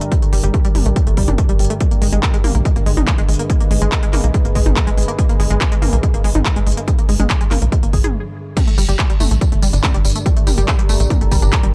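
A straight 4/4 pulse at 142 BPM drives this relentless peak-time techno cut, anchored by a heavy, layered electronic kick sitting up front with a tape-warm, small-room character. Around it, a techno drum kit of smooth hi-hats, handclaps, tambourine, toms and crash cymbal adds produced, re-recorded texture, while a tight, punchy sequencer bass with a nasal sawtooth-and-square pluck pumps against the kick from further back. A detuned, mellow sequenced synth riff carries the hook, its fast-attack filter pluck thickened by chorus and tape echo and breathing with sidechain pumping. Above it, a deep, moody ambient pad with a sub-octave layer drifts in reverb and chorus, joined by a very quiet, eerie FM drone with a metallic, inharmonic ring. The harmony moves from G minor to A-flat minor, then a brief stop from 8.1 to 8.6 seconds gives way to a drop back on G minor. The whole fragment, cut from a longer piece, has a dry, gritty hardware and cassette sound.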